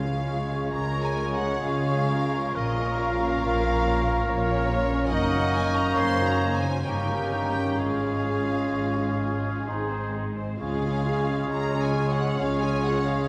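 Classical orchestral music, a tender, serene slow romantic movement in triple metre with rubato, cut from a longer piece. A lush, distant violin section carries the vibrato-rich melody, joined by a hollow, pure flute, a warm oboe, a clarinet and a second, smoother violin section from 0.7 seconds. A portamento-inflected viola section, bassoon, warm horn chords, a very quiet ringing harp, a rich cello section and a dark, soft-attacked double bass section support them, while very quiet timpani sound only until 1.1 seconds. The ensemble sits in the wet, reverberant space of a church or concert hall.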